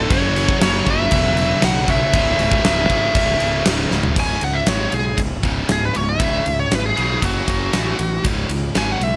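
A huge arena drum kit sits up front in this heavy, driving hard rock excerpt, its punchy kick, fat snare and bright cymbals ringing in a pumping hall, with a fill at 3.9 s. A bluesy overdriven lead guitar carries the melody and takes a solo from 4.2 s, over a growly fuzz bass played with the fingers and a tight, double-tracked riff guitar in the background. A second picked, bright, overdriven guitar plays a riff until 4.2 s, and the harmony moves between C# minor and power chords on F#, A and C#.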